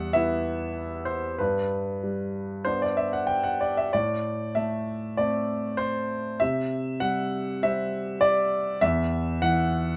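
Flowing in a rubato 4/4 around 97 BPM, this reflective, intimate neoclassical minimalist fragment from a longer piece features a solo concert grand piano, clear and up front with deep bass, long sustain and audible action noise, moving through Em, G, Am and C across a range from E2 to G5 before the harmony falls away at 8.8 seconds, all set in light reverb.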